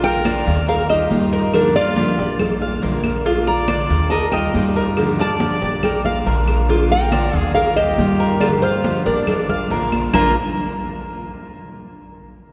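A relaxed, danceable Cuban son and guajira groove in a straight 4/4 opens this section of a longer piece. Hard-handed, high-tuned congas ring in the background from the start, joined at 0.3 seconds by tight, distant cowbell and bongos and by woody claves. Up front, a dark, growly pizzicato upright bass anchors a progression that cycles through Bb, Ebadd9 and Gm7. A fingerpicked classical nylon-string guitar carries the melody, while a punchy, vintage-toned trumpet with scooped notes adds a second line. The Cuban tres weaves metallic arpeggios on its doubled strings, and a full-bodied jumbo steel-string guitar with fresh strings supplies picked accompaniment, its finger squeaks audible. The whole band sits in a wet cathedral-like reverb that gives the recording a spacious, churchlike sound.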